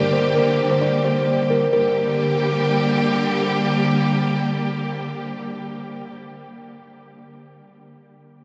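A lush, up-front symphonic string section carries sustained chords with vibrato and portamento through 6.2 seconds of this brooding, dark hip hop fragment in G minor, set at 131 BPM with a half-time feel. A woody, ringing kalimba plays a mellow melody through a low-pass filter until 3.1 seconds, while a very quiet concert grand piano adds deep, vintage-toned accompaniment only until 0.8 seconds. A huge ambient reverb with a 9.1-second decay soaks the mix in a dreamy haze.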